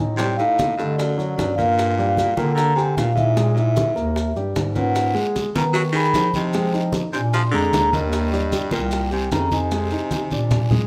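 Sunny and danceable, this short Afro-Cuban jazz excerpt moves at 151 BPM in a straight 4/4, with a ringing, metallic vibraphone carrying the melody over a dark, intimate grand piano and an up-front, mellow bass clarinet holding down the low end. A gritty, growling baritone saxophone adds a second line, while low-tuned, thick-skinned congas, tight high-tuned bongos and grainy maracas keep the groove, and a raspy guiro joins at 5.0 seconds. Light reverb surrounds the ensemble, and a drum fill closes things out from 10.1 seconds.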